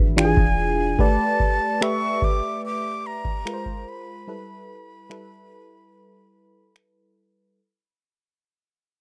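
A straight 4/4 pulse of booming analog drum-machine kick and finger snaps anchors this late-night, longing contemporary R&B excerpt, where a clean, deep 808-style bass sounds only in the first second, a warbling FM electric piano with tremolo moves through chords such as E7b9 and A9sus4, a breathy, close-miked concert flute carries the melody through tape echo, and the dry, gritty recording fades out across its whole length with a break from 4.3 seconds.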